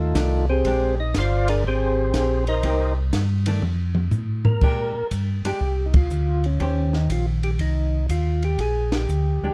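Swung eighths in 4/4 drive this soulful, greasy soul jazz organ trio fragment, cut from a longer piece, where a percussive tonewheel organ with key click, slow rotary speaker and plate reverb carries the melody over a round, up-front organ bass with chorus vibrato, a dark, compressed hollow-body electric guitar accompaniment, and a small-room cocktail kit with a high-tuned snare and punchy kick; the lead organ solos until 4.6 s with a drum fill closing that passage, and the band hits accents at 5.9 and 8.8 s.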